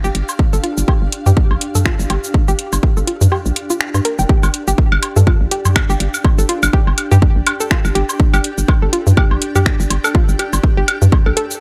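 A punchy, up-front electronic kick anchors this cool, clinical minimal techno excerpt at 123 BPM in 4/4, with a 57% swing on the 16ths. Beside it sit a knocking FM bass with sidechain pumping, plus a house kit of cabasa, finger snaps and hi-hat and prominent electronic woodblock and toms, the percussion all tape-warmed and re-recorded in a small room. A hollow, detuned square-wave pluck riff with chorus, tape echo and pumping floats over a cloudy granular pad with its own reverb, while a break at 3.3 seconds leads into the drop at 4.3 seconds, all within a dry, gritty hardware sound with transformer saturation.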